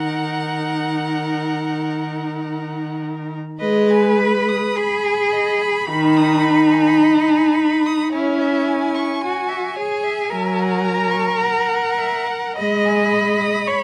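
A dark, warm studio sound with moderate reverb frames this elegiac string quartet fragment, cut from a longer piece. It moves slowly and freely in 4/4, at roughly 43 to 56 BPM with rubato, opening in E-flat minor before shifting to G-sharp minor at 3.6 s. The cello and viola sit up front and carry the most weight: the cello holds a focused, vibrato-rich bass line, and the viola's expressive accompaniment slides between notes with portamento and a smooth top until it stops at 13.5 s. Above them, the first violin sings the melody in a rich, even, distant tone. The second violin weaves a soft-attacked, expressive line with its own gliding portamento. The harmony drifts melancholically through C-sharp minor and F-sharp seven before settling on A-flat minor at 12.6 s.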